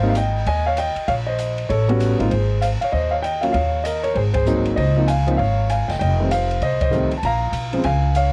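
A brisk swung 4/4 at 195 BPM carries this playful, relaxed jazz piano trio excerpt in Ab major, where an up-front grand piano leads the melody over a woody pizzicato upright bass with transformer saturation and an airy small-room drum kit of dark cymbals, medium-tuned snare and boomy kick, the band hitting accents at 4.3 and 6.8 seconds amid little reverb and the worn, warbling pitch drift and vinyl crackle of old cassette tape.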